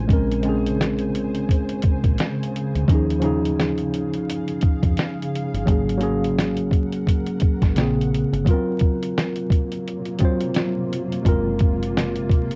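A compressed, pitched-down sampler-style drum kit sits up front in this reflective, hazy lo-fi hip hop excerpt, its thumpy kick, fat snare and hi-hat arriving at 0.1 s with a muffled, swung feel. Beside it, a worn tine electric piano carries the accompaniment in a clean, direct tone that drifts slightly out of tune. Underneath, a deep dub fingered electric bass adds a dark, round, foam-muted line with a punchy attack. A granular cloud pad hovers further back, sustaining blurred, detuned chords that swell in slowly, evolve and linger on its own reverb. The harmony moves through lush extended chords from Bbm9 before shifting at 8.5 s into a dreamier Gbmaj7#11 colour. The whole excerpt has the softened feel of a home cassette recording in a small booth, wrapped in vinyl crackle.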